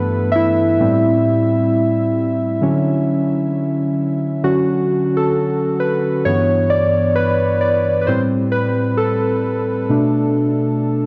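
This hip hop fragment, cut from a longer piece, drifts along at a slow 66 BPM in 4/4 with a lazy sixteenth-note swing, carrying a nostalgic, dreamy mood in D major. A single analog keys part plays alone for the full 11.1 seconds, spanning G2 to E5 and sitting up front in the mix. Its round, mellow tone blends square, sawtooth and triangle waves with detuned voices, a touch of ring modulation and a filter sweep, each note striking with a fast attack before decaying. Chorus, cassette tape colour, a low-pass filter and analog delay give the keys a hazy, worn quality, while a moderate plate reverb adds a soft sense of space. The harmony moves from G6/9 through Am7 to Dmaj9, then shifts at 4.4 seconds into Dmaj7, G6, Am7 and Bm7, all within a dark, warm production.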